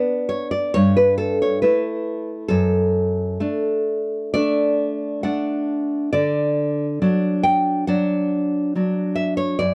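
The recording carries the worn, warbling character of old cassette tape, with a warbly pitch drift and a light reverb around the sound. This short excerpt of a romantic piece for solo classical guitar moves at 68 BPM in 4/4, played with a rubato feel in D major. A nylon-string guitar, acoustic and fingerpicked, sits up front and carries the whole performance, ranging from F#2 up to G5. The harmony opens on a rootless G, passes through A5 over G and D over F# at 2.5 seconds, and settles on D at 6.1 seconds. The mood is warm and tender throughout the 9.7 seconds.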